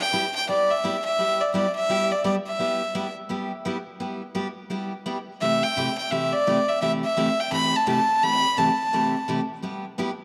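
A wet plate reverb with a long 3.5-second tail surrounds this brief country excerpt, playful and down-home, swinging at 170 BPM in G major. A single clear, nasal fiddle carries the melody close and up front with light vibrato and an airy bow, playing from the start, pausing at 3.1 seconds, and returning at 5.4 seconds. A bright, full-bodied picked dreadnought guitar accompanies throughout with audible finger squeak, as the harmony moves between G6 and C6.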